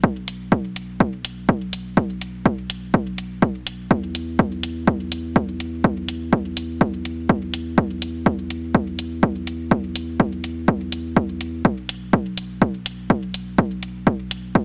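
Dub techno with a hypnotic, meditative pull, this short cut from a longer piece pairs a punchy, dry, overdriven analog kick and a gritty, up-front hi-hat entering at 0.3 seconds with a deep, round sine sub bass that pumps under sidechain, all heard through an AM radio sound with little reverb.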